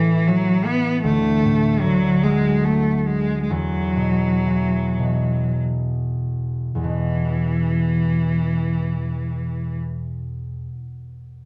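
Nostalgic and tender, this short excerpt of a Celtic folk slow air in E mixolydian drifts in a rubato 3/4 at 47-79 BPM, slowing from 1.0 to 6.8 s, as a single bowed cello carries the melody with rich, smooth vibrato over ringing, thumb-plucked concert harp accompaniment that carries on after the cello stops at 9.8 s, both up front in a dark production bathed in moderate recital hall reverb.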